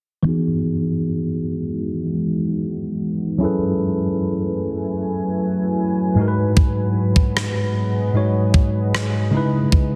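Densely limited and lightly reverberant, this longing, sensual contemporary R&B excerpt opens with a worn, slightly out-of-tune tine electric piano, lightly overdriven as if heard through built-in speakers, joined at 1.4 seconds by a deep, dark, detuned sawtooth pad with chorus and a sub octave, while a filter sweep runs throughout and a gated 80s digital drum machine with a thumpy kick and rim click arrives at 6.6 seconds over chords moving from Emaj9 through F#m11 and G#m7 to C#m9.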